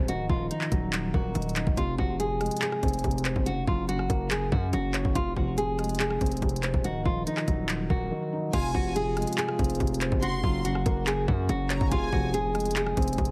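A half-time trap groove sets the pulse, with an electronic kit entering at 0.1 s: a knocking kick, crisp hi-hats, handclaps, rim clicks and a crash cymbal, all sitting up front. Beneath it, a distorted 808-style bass hits heavy and aggressive, its saturated sine tone carrying a noise layer, a fast attack and a decaying tail. A fingerpicked nylon-string guitar carries the melancholic melody through a low-pass filter and delay, its classical tone bringing audible finger squeak, while a felt-muted upright piano adds dark, intimate accompaniment with thick felt and audible action noise. After a brief break, the second section opens at 8.5 s, where a very quiet French horn section adds mellow sustained chords and a studio violin section floats a soft-attack, sul tasto second line with delay until 12.3 s. The whole cut from a longer piece comes across as a heavily compressed radio sound in a small room, with lossy compression artefacts.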